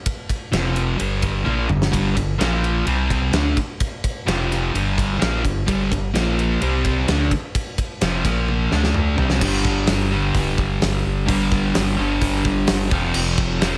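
Hard rock with a swaggering, powerful strut in a straight four-beat groove, cut from a longer piece. A gated 80s drum kit drives it from the first moment, sitting up front with a fat snare, a punchy kick and bright cymbals ringing off a big, polished gated room, and it throws in fills around 1.5 and 8.5 seconds. A sludgy, double-tracked guitar riff enters just after, dark and overdriven, grinding through power chords on F, G, B-flat, C and D. Beneath it, a rubbery square-wave bass bounces along in the low register with a hollow, nasal tone and a resonant filter pluck. At 9.4 seconds the music moves into a new section that leans on a sustained G chord before returning to F near the end, all set in light reverb and a small room ambience.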